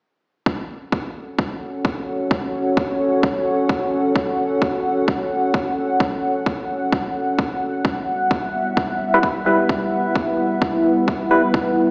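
A swung 130 BPM bass house groove in F# phrygian opens on a punchy, overdriven kick at 0.5 seconds, joined by a detuned, wave-folded analog pad and a deep, moody ambient pad, both chorused and pumping under sidechain, over F#m shifting to Em, before a hollow, percussive organ stab with digital delay cuts in at 9.1 seconds for a swaggering, aggressive close in a lush hall and stone-room ambience with a small-speaker tinge.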